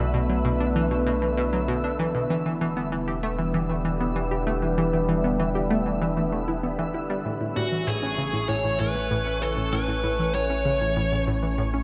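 Awash in a long plate reverb and heavy echo, this luminous, expansive slice of sequencer-driven space music moves at 97 BPM in 4/4, drifting from Bm7 and Em7 to settle on Amaj7 at 7.3 s. A morphing, detuned wavetable pad with phaser and shimmer reverb holds sustained chords up front beside a sawtooth analog pluck riff with chorus and analog delay, while a deep, triangle-toned analog bass anchors the low end and a faint, sparkling granular texture glints high above. At 7.6 s a dark, overdriven lead guitar enters with a picked melody through shimmer reverb and delay, lasting until 11.2 s.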